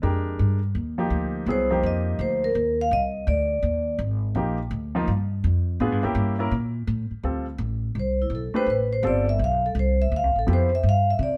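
Intense and searching, this modal jazz excerpt swings at 167 BPM in 4/4, shifting from F dorian to D dorian at 7.2 s as the harmony moves from F13sus4 through A7b9 to Dm11. Up front, a woody pizzicato upright bass holds down the bass line and a natural, short-sustained baby grand piano provides the accompaniment, while a close-miked vibraphone played with medium mallets and motor off carries a ringing, metallic melody before taking a solo in the second section. The band plays live together in a moderate stone room, and the piano drops out at 10.7 s.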